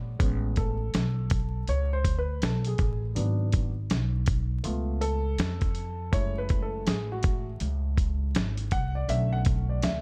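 Through a dark, crackling vinyl haze and studio reverb, this smooth, warm jazz-hop cut from a longer hip hop piece opens with a woody pizzicato upright bass up front and a mellow, worn grand piano, its action noise audible. At 0.2 seconds they are joined by a gritty, compressed sampler-style kit with a thumpy kick, medium-tuned snare and hi-hat, as the piano takes an intimate solo over swung sixteenths and chords moving from Amaj9 through F#m9 to Bm7.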